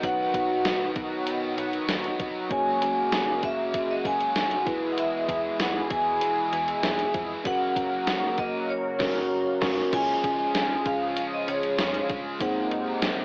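Heard through a home-cassette haze with an AM-radio tone and a wet small-room reverb, this clip from a longer piece is glossy, uplifting 1980s-style pop at 97 BPM in 4/4, set in F# mixolydian. A gated digital drum machine sits up front with a thumpy kick, a snare drenched in gated reverb, hi-hat, tambourine and crash cymbal. A vibraphone struck with hard mallets carries the melody in a metallic, ringing, airy voice with a fast motor vibrato, over a clean, bell-like tine electric piano and a shimmering, retro pulse-width pad holding sustained chords with a soft attack and long release. A double-tracked, high-gain guitar adds bright, picked distortion with analog chorus, while a snappy FM bass with a mellow, decaying tone stays in the background. The chords move from B through F#add9, E and F#, then shift to Db and Abadd9, with a band accent running from 8.7 to 9.9 seconds just before the section repeats.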